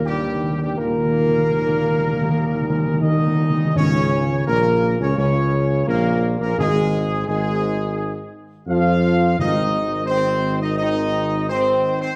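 Set in a steady, straight four, this solemn and regal brass excerpt opens with a timpani fill, struck with medium mallets, that runs to 3.8 seconds. The clear trumpet section carries the melody up front with a light vibrato and soft attack. Beneath it, the warm, vintage-tinged French horns and the dark, distant trombones hold sustained chords, the trombones sitting tight in the background. A mellow tuba anchors the bass up front with its own light vibrato. From 3.8 seconds the harmony moves through B-flat minor, F minor over A-flat and A-flat major, and the timpani drop out at 10.4 seconds. The ensemble sounds in a wet scoring-stage reverb that lends a broad, ceremonial sense of space.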